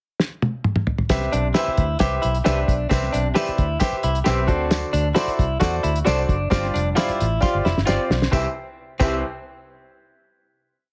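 This is a short, complete piece of uptempo 1960s-style soul in C major at 133 BPM, uplifting and warm in mood, with a heavily compressed radio-like sound and light reverb. A cloth-damped, thuddy drum kit opens with a fill at 0.2 seconds over the pickup bar, then drives a soul beat with a fat snare on all four beats, a tight kick and dark cymbals. At 1.1 seconds the verse begins on Cmaj7. A jingly tambourine enters there, marking every beat from up close. A foam-muted vintage bass joins with a round, punchy, syncopated line full of ghost notes and chromatic approach notes, alongside a clear concert grand piano playing close-voiced quarter-note chords with plate reverb. A bright, direct-recorded clean guitar repeats a picked figure with spring reverb, and a slightly broken-up guitar through a small old amp adds lo-fi chops on the backbeat, thickened by lush chorus. The harmony moves through D7 and G7sus4, and a second drum fill at 7.4 seconds leads into a final Cmaj7 chord.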